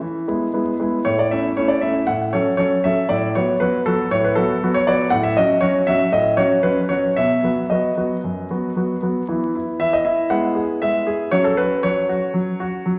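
A clear grand piano sits up front in a wet recital hall, its natural, intimate tone carrying audible action noise and a short sustain, while a layer of vinyl crackle hovers over the sound. This short excerpt, cut from a longer classical-period sonatina, moves at 117 BPM in a straight 4/4 with a playful, elegant character. The piano plays alone throughout its 13 seconds, ranging from F#2 to F#5, and settles into E major from 5.1 s. The opening section moves through E, A and F#m/A harmonies before leaning on B over an A bass and resolving toward B. At 9.3 s a new section begins on a bare E chord, then passes through E/G# and ends on an open F#5 as the excerpt breaks off.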